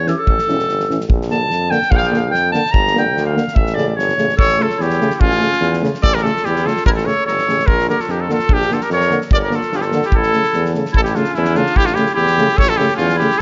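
Bittersweet and fiery, this Balkan brass band fragment opens with a distant, roomy clarinet soloing over a clear, vintage tuba bass, two background euphoniums (one dark and smooth-topped, one with light vibrato) and a punchy acoustic drum kit with a fat snare, before a warm, up-front trumpet with analog delay takes the melody at 4.4 seconds, the band circling A, Bb and Gm chords in light reverb with a mellow, rolled-off top.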